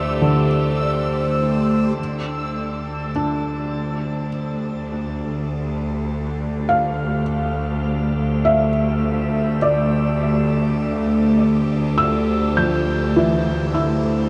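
Ambient and melancholic, this spacious excerpt opens on a reversed, dreamy backwards swelling texture that sounds only until 2.0 s, while a soft, felt-muted upright piano plays intimate arpeggios up front with audible action noise and tape echo. An evolving, bright wavetable pad with phaser holds sustained chords and fades in from 2.0 s, over a warbling, vintage analog drone with chorus and a rich, bowed cello section carrying the bass with smooth vibrato. The whole excerpt sits in a wet shimmer reverb with a long 9.0 s tail and the character of cassette tape.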